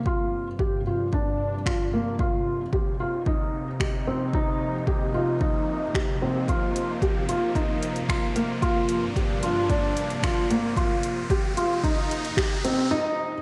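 Hypnotic and cinematic, this piano and strings electronica excerpt is one long build-up, where a soft, felt-muted upright piano riff sits up front with audible action noise, analog chorus and delay over a lush, detuned sawtooth unison pad whose sustained chords pump with sidechain and carry a filter sweep across the full 13.4 seconds. A punchy, overdriven electronic kick drives from the start, a deep house kit of finger snaps and metallic hi-hats joins at 1.7 seconds, and an electronic riser climbs beneath everything until 12.9 seconds as the chords move from Gm7 through Eb69/C and back to Gm7 and Cm7. The dreamy mix is soaked in a lush hall reverb.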